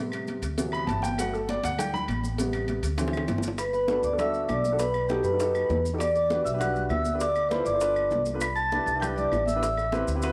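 A lively, danceable Afro-Cuban jazz groove in 4/4 rests on bright, distant congas, tight cowbell and bongos, woody claves and grainy maracas beneath a pizzicato upright bass, while an up-front grand piano takes a featured solo over the first 3.6 seconds, capped by a drum fill. From 3.6 seconds a ringing, metallic vibraphone with tape echo carries the melody as a breathy, hollow silver concert flute with vibrato adds a second line above it, both moving over sophisticated extended harmonies. The whole sits in a moderate echo chamber reverb with small room ambience, and the passage is cut from a longer piece.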